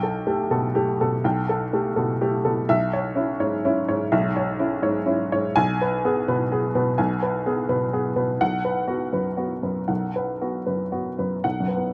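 Dry and close with an open-air stillness, this 11.9-second excerpt of intimate, peaceful neoclassical minimalist piano features a solo upright piano, worn, woody and slightly detuned with a short sustain, played up front and rubato in 3/4 at 124 BPM across a range from B1 to G#5, moving through Gadd9/B, C#m/B, G#m/B and B5.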